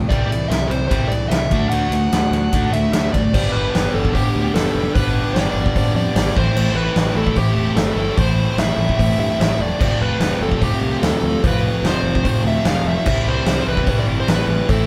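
Gritty and driving, this classic rock excerpt in straight 4/4 pairs a bright, picked distorted electric guitar riff with a crunchy overdriven guitar sitting in the background, while a growling fingered electric bass, bright and overdriven, anchors the low end. A huge arena drum kit sits up front with punchy kick, medium-tuned snare and bright cymbals, and a dark, smooth lead guitar carries the melody over chords moving from C and D to G, Am and F. At 3.3 seconds a close, very quiet metallic cowbell joins as the band, heard playing live in one room with moderate reverb, moves into its second section.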